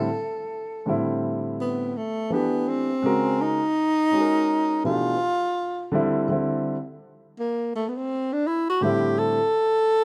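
Cool and smoky, this swung hip hop excerpt sets a close-miked, breathy tenor saxophone solo, with its subtone, scooped notes and light vibrato, up front over a warm grand piano that accompanies until 9.4 seconds, all within the light reverb of a small room in a rough home demo mix.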